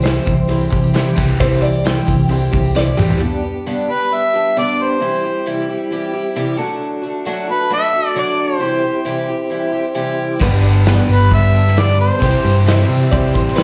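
A straight 4/4 pulse at 133 BPM drives this jangly, nostalgic slice of folk rock and heartland rock. It opens with a twangy, tremolo-tinged twelve-string electric guitar solo over a round, up-front hollow-body bass, a punchy drum kit played with bundle sticks under dark cymbals, a very quiet jingly tambourine, a double-tracked overdriven guitar riff and a woody, slightly detuned upright piano, all ending with a drum fill. From 3.2 seconds the band thins to a boxy, shimmering picked twelve-string acoustic and a mellow tonewheel organ on a slow rotary speaker. A clear harmonica carries the melody from 3.9 to 12.6 seconds, and the drums, bass, piano and riff guitar return beneath it at 10.4 seconds, all heard live through a club PA with light reverb and slapback echo on the guitars, piano and harmonica.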